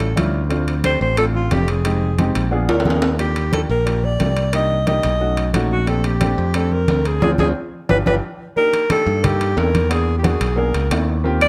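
A breathy alto saxophone with vibrato and a soft, subtoned attack carries the melody up front in this sunny, danceable Afro-Cuban jazz at 179 BPM, over a punchy, bright picked electric bass, a dark, mellow baby grand piano with audible action noise, soft-handed congas with thick, damped skins in the background, and ringing metal-shell timbales, with drum fills at 2.7 s and 7.7 s, a band accent from 7.2 s, and light reverb on a close, detailed recording.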